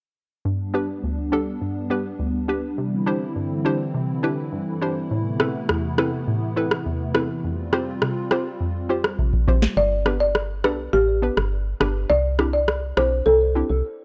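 A dry, rustic marimba played with medium mallets carries the melody in this tough, sultry dancehall excerpt, entering at 9.8 seconds with a woody, boxy tone and an analog delay on its line. Before it arrives, a hollow, bouncy square pluck with a warbling chorus sets up the accompaniment, sitting under a soft, flute-like pad whose sustained chords pump against a sidechain. A booming analog drum machine joins at 5.4 seconds at a straight 103 BPM in 4/4, with a deep kick, a tonal snare and a rim click carrying a tape-tinged character, and it plays a fill just before the second section. From 9.8 seconds the kick drops out as a round, dark FM bass comes in beneath the marimba, while the chords return to G and then move to Cadd9. The whole recording is gritty and close, with little reverb.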